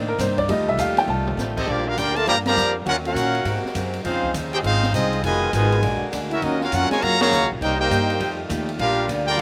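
Big band swing in B-flat major at a brisk 202 BPM, this swinging, brassy excerpt opens with a clear, boxy upright piano solo carrying a slapback echo over woody pizzicato upright bass, a very quiet picked archtop guitar, soft sustained saxophone chords and an open drum kit with dark cymbals, before a brilliant, up-front trumpet section takes the melody at 1.6 seconds with a bright trombone section beneath, the band punching accents at 2.4 and 7.2 seconds in a dry, roomless sound.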